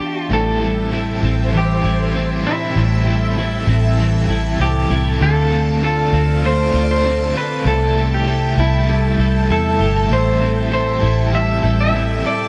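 A straight 4/4 pulse at 98 BPM carries this ethereal, hazy dream pop fragment in A minor, with a round, punchy, foam-muted fingered bass up front entering at 0.3 s beneath chords moving from Am7 through Dm7 and C6 back to Am7. A dark, clean picked guitar carries the melody through tremolo and delay, while a second clean guitar, warm and up front, plays arpeggios through analog chorus and delay, and an overdriven guitar sits in the background with tremolo and lush chorus. A bright, swirling phased string machine holds sustained chords, a very quiet twinkling granular texture with octave-up shimmer appears at 1.3 s, and a lush hall reverb gives the dark production its haze.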